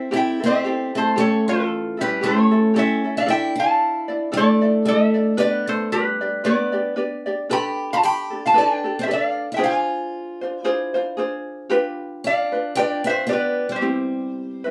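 Dreamy and languid, this Hawaiian excerpt sways at 114 BPM with a gentle swing, the lap resonator guitar carrying the melody up front in a mellow, nasal, metallic slide voice played with fingerpicks. Beneath it, a warm picked steel-string acoustic guitar adds a second line while a bright, light fingerpicked ukulele supplies accompaniment, all three playing throughout the 14.7 seconds. The band sounds live together in one room with a wet studio ambience, moving through chords from C6 and A7 to Fm6 and G7 before resolving on C.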